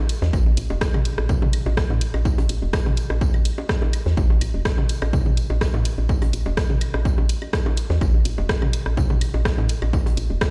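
Minimal techno at 125 BPM with a light 16th-note swing, sparse and quirky, cut from a longer piece and running about 10.5 seconds. An up-front, dry, punchy electronic kick anchors a woody, round FM bass that pumps against it, while an analog drum machine adds hi-hat and rim click, and tape-warm electronic bongos, woodblock and toms carry a digital delay. A big rock kit's natural hi-hat, medium-tuned snare and tambourine sit faintly underneath, all heard as if played on a big sound system in a bare room with large studio reverb.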